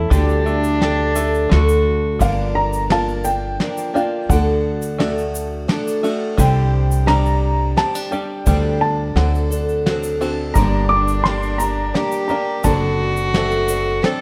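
A dark, slightly detuned upright piano carries a high melody over the boxy, octave-doubled shimmer of a picked twelve-string guitar, plunky fingerpicked banjo arpeggios and a thumpy, up-front pizzicato upright bass, opening this melancholic, haunting acoustic folk excerpt in G harmonic minor at 86 BPM in 3/4. A pure, floating bowed cello sings a soft second line until 2.2 seconds and returns at 10.6 seconds. Brushes on a smooth, rolled-off kit and a grainy tube shaker keep a straight feel beneath chords moving from Gm7 through Csus2 and D7, all set in light reverb.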